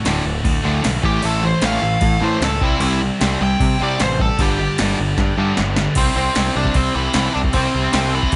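A nasal lead guitar with a parked wah sits up front from 1.1 s, its overdriven, picked melody carrying a solo through this upbeat, energetic punk rock excerpt. Beneath it, three guitars churn out riffs in the background: a bright, overdriven electric, a double-tracked high-gain guitar with heavy distortion, and an overdriven hollow-body semi-hollow guitar that drops out at 5.9 s. A growling picked electric bass, direct and amped with added overdrive, pushes up front alongside an electronic analog drum machine whose deep kick, punchy snare and crash cymbal carry a tape-warm character and were re-recorded in a large room. The harmony moves from D through A, C and G before a drum fill at 5.2 s leads into a new section settling on C. The mix is dry and dark at the top end, keeping the straight-ahead drive blunt and close.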